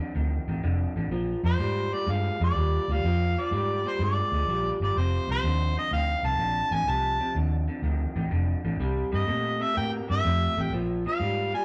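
Electric blues shuffle at 125 BPM in 4/4 with a swung eighth-note feel, laid-back and soulful, centred on F mixolydian. This short excerpt is cut from a longer piece. An electric guitar through a small old amp carries the riff from the first moment, its picked, slightly broken-up lo-fi tone colored by a vibrato effect. A vintage muted fingered bass joins at 0.2 seconds, dark, round and punchy, sitting up front beneath the guitar. At 1.5 seconds a mellow harmonica enters with a jazz-style solo melody, overdriven and up front, with a light vibrato and a vintage character. The chords move from F7 to Bb7, back to F7, then to C7 and Bb7, all heard in a rough rehearsal-room recording with warm saturation and a moderate stone room reverb.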